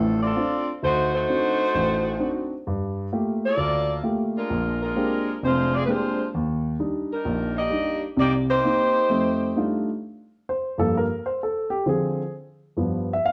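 A dark, vintage saxophone section with light vibrato carries the melody up front from the start, alongside a mellow baby grand piano with short sustain, in this sultry, brassy swing jazz fragment cut from a longer piece. The horns drop out at 9.8 seconds, and from 10.0 seconds the natural-sounding piano plays alone as the harmony turns toward a minor colour. A moderate large-studio reverb gives both parts a sense of room until the close at 13.3 seconds.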